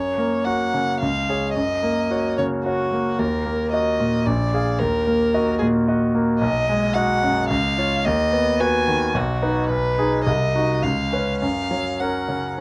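A violin and a concert grand piano begin together, opening a cheerful, graceful classical-period movement in a quick triple metre, taken with a flexible, rubato feel. The solo violin carries the melody in a warm voice, its bowed line shaped with vibrato, soft attacks and expressive portamento. The piano supplies the accompaniment with a brilliant, polished tone and a deep bass, sitting slightly louder than the violin, with both instruments close and present. The harmony moves through a graceful progression that passes through minor chords and a diminished chord before settling home at 11.4 seconds. A modest small-room reverb and a dark overall production frame this brief passage, which is cut from a longer piece and runs 12.6 seconds.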